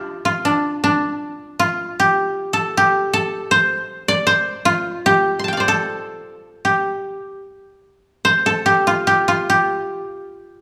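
A solo koto, played with fingerpicks, sits up front with a dry, woody tone, moving freely around 77 BPM in G suspended pentatonic across the 10.6 seconds of this short excerpt from a longer piece. The Japanese traditional chamber music feels calm and austere, and the koto shifts into a new section at 8.3 seconds. A moderate recital hall reverb and a hint of small room ambience surround the instrument.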